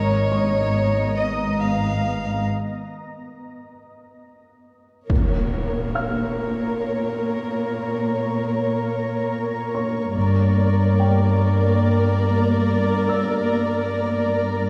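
Cinematic suspense film score in 3/4, mysterious and uneasy, where an intimate sul tasto violin section carries the melody over a shimmering, ethereal ambient pad with chorus, an up-front woody cello section and a soft-attack bowed double bass section in the background, while a felt-muted upright piano adds boxy, mellow texture and a viola section joins at 5.1 s as a huge, bright impact hits, set in a wet scoring-stage reverb with a dark, warm production.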